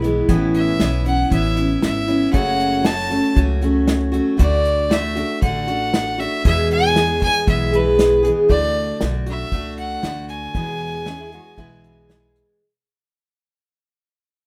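A clear, up-front fiddle with light vibrato carries an easygoing, heartfelt honky-tonk melody at 117 BPM, over a bright, full-bodied picked jumbo acoustic guitar, a woody, thumpy pizzicato upright bass and an airy unplugged drum kit played with bundle sticks, with a metallic, nasal lap resonator guitar slipping in at 11.1 seconds as the chords move through Aadd9, F#m, D and E in a rough home demo mix with moderate studio reverb that fades out from 8.5 seconds.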